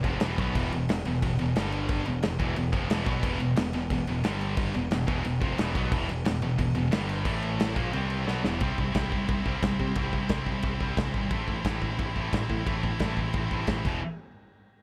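Heavy metal with a heavy, relentless drive, this fragment of a longer piece pairs an up-front, bright high-gain guitar riff with a scooped high-gain guitar tucked in the background, both running through the full 14 seconds over a growling, overdriven picked bass. A big acoustic kit with a punchy kick, medium-tuned snare, crash and ride sits dark and smooth in a big room, and a drum fill at 8.3 seconds leads the power-chord riffing into a second passage built on C and Am chords. The mix stays dry.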